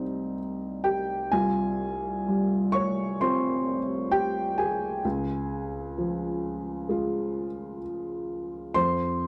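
A felt-muted upright piano sits up front in a moderate studio reverb, its tone soft, boxy and intimate. This short passage cut from a longer piece is wistful, reflective neoclassical minimalism in F minor at 64 BPM in a rubato 4/4, the solo piano ranging from C2 to Db6. The harmony moves from Cm to Fmadd9/C at 1.3 seconds, settles on Db at 5.0 seconds and closes on a bare F5 at 8.8 seconds.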